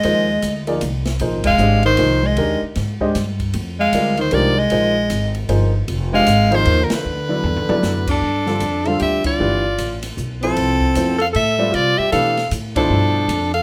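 A bright, forceful soprano saxophone carries the melody from the first beat, with a breathy, subtoned alto saxophone playing a second line below it, in this open, spiritual modal jazz excerpt that swings in 3/4 at 154 BPM, centred on Bb mixolydian before moving to G mixolydian at 8.2 seconds. An intimate baby grand piano with audible action noise and short sustain comps beneath, while a woody, growly pizzicato upright bass sits up front and an acoustic drum kit with dark cymbals and a boomy kick plays softly behind. The band hits accents across both sections, the drums slip in a brief fill around 7.4 seconds, and light reverb surrounds the group.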